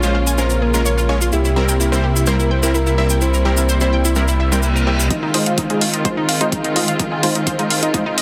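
A straight 4/4 pulse at 127 BPM drives this expansive, bittersweet progressive house passage in F minor, cut from a longer piece. A dark, detuned saw bass sits up front with a deep, rumbling weight, while grainy cabasa adds acoustic texture and a soft, octave-layered synth lead carries the melody with a round, vibrato-touched tone, chorus and dub echo. Lush bowed strings hold clear sustained chords through a touch of vintage 12-bit sampler grit, joined by a warbling analog pluck playing arpeggios and punchy supersaw stabs shaded by a low-pass filter and dub echo. Sidechain pumping breathes through the lead, strings, pluck, stabs and bass, and the harmony moves from Bbm7 to C7 before settling on Fm7. A reverse cymbal rises in the background from 4.4 seconds, and at 5.1 seconds a build-up begins as the bass and cabasa stop and an electronic kick and an up-front, pumping hi-hat enter. Light reverb surrounds a dense, heavily limited modern master.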